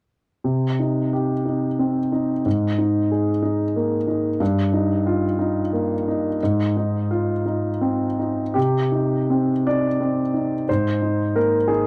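A solo concert grand piano opens this wistful, reflective fragment of neoclassical minimalist piano in C minor, played rubato in a slow 6/8 at 53-63 BPM, its intimate tone, deep bass, long sustain and audible action noise sitting up front with a touch of tape echo, as Cm, Absus2, Ebadd9/G and Fm7/Ab pass before the harmony returns to Cm at 8.6 s in a dry, close 1970s-style studio sound with light reverb.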